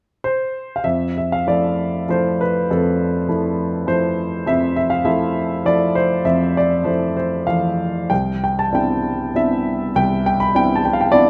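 A dark, warm production in a moderate recital-hall reverb frames this sunny, lyrical classical excerpt for solo grand piano in 3/4 at 99 BPM, where the clear, intimate, up-front tone carries audible action noise and long sustain, and the rubato playing spans C2 to B5 while moving from Fmaj7 at 0.8 seconds to Cmaj9 at 8.1 seconds.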